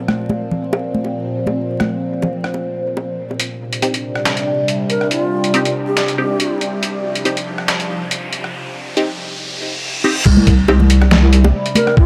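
Dark and crackling with vinyl grit, this meditative deep dubstep excerpt in a half-time swing opens on a bright, phased drone with moving overtones over gritty, overdriven sampler-style drums and close, dry congas and bongos with dub echo, then builds from 3.4 seconds as muted, resonant filtered chord stabs enter at 3.8 seconds, followed by a distant breathy ney melody and a background riser and reverse cymbal, before dropping at 10.3 seconds into a deep, chorused wobble bass and a thumpy, up-front kick.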